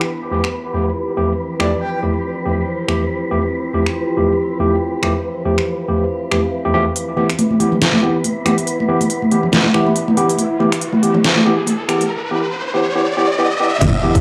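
Deep dubstep at 140 BPM in a half-time, swung feel, heavy and cavernous, where an overtone-sweeping drone with chorus and phaser holds sustained chords over up-front crisp-hatted drums with a deep snare and finger snaps, a worn, slightly out-of-tune tine electric piano stabs through dub echo, an airy wind-like noise texture drifts, a breathy flute-like lead briefly appears at 1.6 seconds, soft-handed vintage congas join the build-up from 7.2 seconds as a riser climbs, and the impact at 13.8 seconds brings a punchy kick and a dark, saturated wobble bass.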